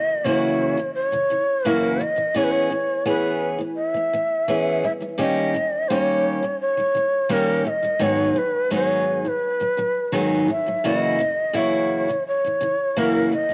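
Reflective and wistful, this acoustic pop excerpt moves at an unhurried 85 BPM in a straight 4/4. A breathy, bamboo-toned shakuhachi carries the melody up front, its tongued notes marked by a soft chiff and gentle vibrato, while a bright, picked steel-string acoustic guitar accompanies close by through a progression that opens on F#7 and passes through G#m7. Both parts play throughout the 13.5 seconds with a cassette-tape color, and light reverb and small-room ambience give the piece the intimate feel of a home recording.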